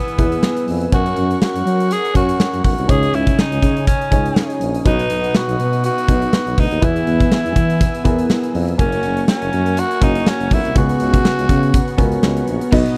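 A raspy, gritty tenor saxophone carries the melody through this nostalgic, uplifting 1980s-style pop excerpt, its lines trailed by tape echo and set over a dark, mellow baby grand piano with long sustain and a brassy, detuned analog pad with chorus sitting in the background. An up-front rock drum kit with a punchy kick, crash, hi-hat and a medium-tuned snare drives the lightly swung groove, while a warm tuba with soft, scooped notes plays the bass line. At 12.7 s a crunchy, double-tracked overdriven guitar slips in quietly under the dry, close, 1970s-style studio sound.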